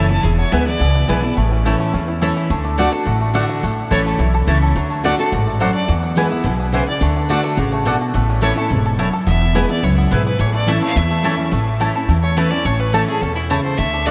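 Bluegrass with a driving, rustic feel, cut from a longer piece, where a clear, intense bowed fiddle with light vibrato and a twangy, fingerpicked banjo carry the melody while the mandolin adds woody picked stabs, all three touched with tape echo. Underneath, a bright, full-bodied dreadnought guitar with audible finger squeak and a thumpy pizzicato upright bass sit up front, and a huge ambient reverb soaks the mix in a dreamy haze. The fiddle takes a solo from 11.5 seconds to the end at 14.1 seconds.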